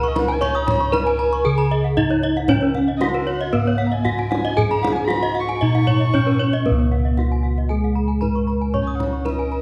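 A straight 4/4 pulse at 115 BPM drives this brilliant, shimmering Balinese gamelan passage in Db slendro, cut from a longer piece. A bright bronze metallophone struck with a horn mallet carries the melody, its paired tuning giving off shimmering beats, while two close-miked, dry metallophones ring out full arpeggios above and mellow, dark bossed gongs hold the bass up front. An intimate erhu with light vibrato, portamento and an airy, nasal bow tone traces a second line over a distant, deep kendang, and a soft, padded-mallet metallophone adds accompaniment from 6.7 seconds, all set in light reverb.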